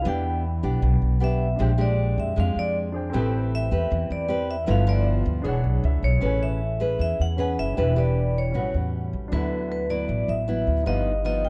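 Bossa nova at 156 BPM with a romantic, relaxed mood, taken from a longer piece and settling into A major at 6.2 seconds. A vibraphone played with medium mallets carries the melody with a metallic, ringing tone and slow motor vibrato, taking a solo through the opening 6.2 seconds. Up front, a fingerpicked nylon-string guitar with fresh strings and audible finger squeak and a woody, thumpy pizzicato upright bass support it, while a polished grand piano with short sustain sits in the background and adds a fill at 5.6 seconds, all in a dark, warm production with light reverb.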